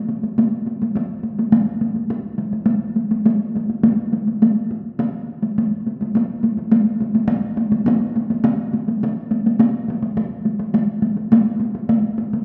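A taiko ensemble struck with hard sticks sits up front in a live room, its acoustic drums carried by a wet scoring-stage reverb with a 1.7-second decay. This ceremonial, driving piece of Japanese traditional music moves at 104 BPM in a straight 4/4, with the drums sounding from 0.1 to 12.4 seconds. The passage, cut from a longer performance, shifts into a new section at 5.6 seconds.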